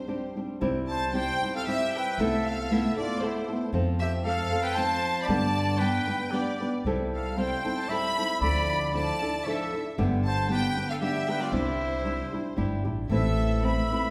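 Mexican folk in the mariachi tradition, this romantic, proud excerpt moves at 115 BPM in 3/4 in C major, with a rich, smooth violin section carrying the melody up front with vibrato while a fingerpicked flamenco guitar accompanies, also up front, finger squeaks audible. A woody pizzicato upright bass enters at 0.6 seconds, and a clear, distant trumpet adds a second line with classical vibrato from 0.9 seconds. The harmony moves through colored chords such as Amadd9/C, C6 and Dmadd9, all set in a wet recital hall reverb.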